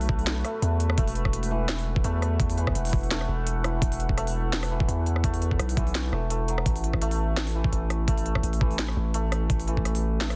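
A dense, heavily limited modern master in a digital ambience carries this cinematic, heavy half-time drum and bass cut at 169 BPM in 4/4, swung on the sixteenths and moving from A5 to Esus2 and back. A deep, sine 808-style bass sits up front under a gritty, pitched-down electronic kick with overdrive that runs from 0.1 to 9.8 seconds, while the layered kit adds a cracking, soft-clipped snare, crisp hats and rim clicks. Bright, shimmering santur arpeggios ring through a delay beneath a moody, detuned sawtooth pad that breathes with sidechain pumping, chorus and reverb in the background.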